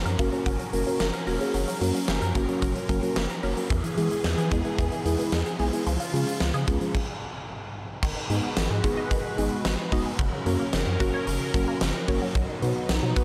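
Set in a light reverb, this cool, melancholic synth-pop excerpt at 111 BPM layers a swirling, phased analog pad and muted, intimate felt-like synth keys with chorus over a round, deep analog bass and a huge arena drum kit with gated reverb, fat snare and bright cymbals, while a squelchy, resonant blip pluck plays arpeggios with slapback echo in the background, and a stop from 6.9 to 8.0 seconds gives way to a new section opening on G#m7.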